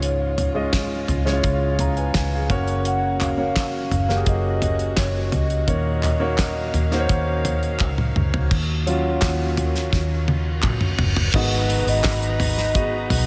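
Dramatic and driving, this piano-driven pop excerpt in Eb minor moves at 85 BPM in a straight 4/4, with an up-front grand piano carrying the accompaniment and taking a solo at 8.5 seconds, a hollow, woody synth lead with chorus and phaser singing the melody, lush bowed strings sustaining chords in the background, a round, foam-muted electric bass, a damped 70s drum kit with a fat snare and dark cymbals, crisp band-limited handclaps entering at 3.2 seconds, and a very quiet reverse cymbal leading into an impact at 11.3 seconds, all set in a big arena-like hall reverb.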